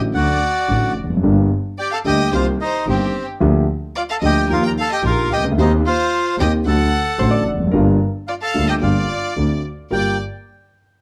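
Tango excerpt with a dramatic, sultry mood and a rubato feel, its reedy, airy bandoneon melody sitting up front in plate reverb over a dark, mellow concert grand piano and a clear, smooth double bass bowed with vibrato from a distance. A rich, earthy chamber violin section adds a bowed second line with light vibrato, and at 7.2 seconds a clean, fingered hollow-body electric guitar joins with a second line of its own. The harmony moves through G minor colours such as Cm7 and Ebadd9 before a D7 turns back to Gm7 at 9.9 seconds, all in a moderate club-sized room.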